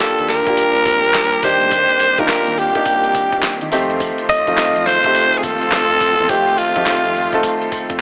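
This slick, confident new jack swing cut has a shuffling sixteenth-note swing in 4/4, with chords moving from Ebmaj7 to Cm7 to F7. A raspy, bright alto saxophone sits up front with the pop-style solo melody, its vibrato and gritty edge carrying the line until it drops out at 7.7 seconds. Beneath it, a warm baby grand piano plays open, long-sustaining accompaniment. A dark, lush studio string section holds bowed ensemble chords in the background, and a smooth sawtooth-and-triangle synth bass with ring modulation and vibrato sits low in the mix. The sampler-style drum kit is compressed and dusty, with a thumpy kick, a medium-tuned snare, hi-hat, handclaps and tambourine. Light reverb and small-room ambience surround the mix, which carries a narrow, telephone-like tone.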